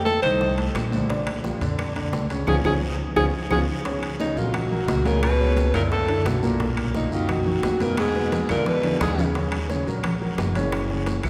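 Lively and sophisticated, this brief excerpt of Afro-Cuban jazz moves at 174 BPM in a straight 4/4, settling into F# major at 3.9 s after a band accent and drum fill, with a warm, subtone alto saxophone carrying the melody over grand piano, a growly pizzicato upright bass up front, and a percussion bed of background congas, very quiet tight bongos, ringing metal-shell timbales, woody claves and a raspy, saturated guiro. A clear baritone saxophone with light vibrato joins from 4.2 s as a second line in the background, and the whole ensemble sits in a church's long, wet reverb.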